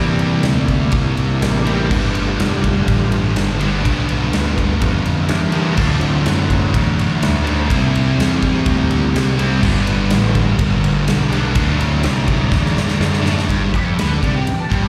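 A thick, double-tracked fuzz guitar riff sits up front over a growling, overdriven picked bass and a gritty tonewheel organ holding sustained chords in the background through a slow rotary speaker with chorus vibrato and key click, joined at 0.2 s by a huge arena drum kit with a punchy kick, medium-tuned snare and bright crash and ride cymbals. This gritty, swaggering blues rock and southern rock power-trio groove moves at 124 BPM in a straight 4/4 in G mixolydian, cycling through C7, G7 and D7 and landing on G7 at 13.5 s after a drum fill. At 13.7 s a dark, lo-fi lead guitar from a small cranked amp begins a melody with wah, overdrive and slapback echo, all heard as a live gig through the venue's PA in a small room with recital hall reverb, cut from a longer piece.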